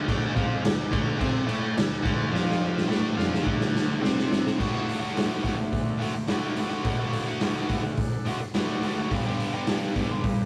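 A straight, steady 4/4 pulse drives this rowdy, raw garage rock fragment, cut from a longer piece and caught in a rough rehearsal-room recording with light reverb. The drum kit sits up front with a saturated, gritty tone and a rolled-off top. Its tight kick, medium-tuned snare, hi-hat and crash cymbal ring in a bright stone room, and a drum fill runs from 2.3 seconds until the new section begins at 4.6 seconds. Also up front, a double-tracked, overdriven electric guitar plays a picked riff that reaches down into its low register. In the background, a vintage combo organ holds clean, buzzy sustained chords. The harmony rests on D for most of the passage before shifting to G at 9.1 seconds.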